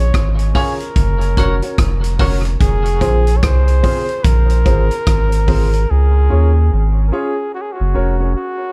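Laid-back and hazy, this excerpt of slow dub reggae at 73 BPM swings gently in 4/4, with a close-miked flugelhorn carrying the melody in a light-vibrato tone soaked in dub echo over a deep, round sub bass moving through Db, Gb and Fm. A vintage drum kit with a punchy kick, hi-hat and rim click sits up front until it drops out at 5.9 seconds, while woody upright piano stabs and a twangy clean electric guitar, heard only up to 2.5 seconds, add echoed accents. The mix is steeped in studio reverb, and the horn lingers after the bass falls away at 8.4 seconds.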